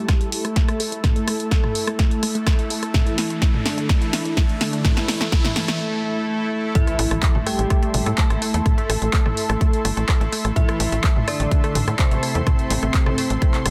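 Melodic techno at 126 BPM in A minor, hypnotic and dramatic: a mellow, round synth brass melody with chorus and tape echo rides over a thick unison pad and bold, brassy analog pad stabs, both pumping to the sidechain in the background, while a very quiet, bright unison pluck plays arpeggios, a layered, punchy kick sits up front beside a tape-tinged analog drum machine of handclaps, hi-hat, rim click, snare and toms, and a riser lifts the build-up before the break, with an impact landing as the drop at 6.8 seconds brings an eerie, inharmonic FM bell line and, from 7.0 seconds, a tight, nasal sequencer bass, the mix finished with light reverb and a dense, heavily limited master.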